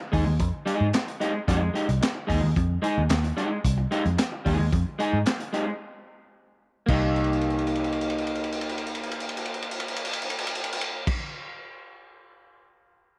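A round, punchy, foam-muted electric bass anchors this sly funk excerpt alongside a slightly broken-up picked guitar through a small old amp over a rootless Fm9 that shifts to Cm7 at 6.9 seconds, while a gritty, saturated breakbeat kit with a high-tuned snare, tight kick, handclaps and dark cymbals drops into a break at 5.8 seconds and then plays a long fill from 7.2 seconds, set in light small-room reverb.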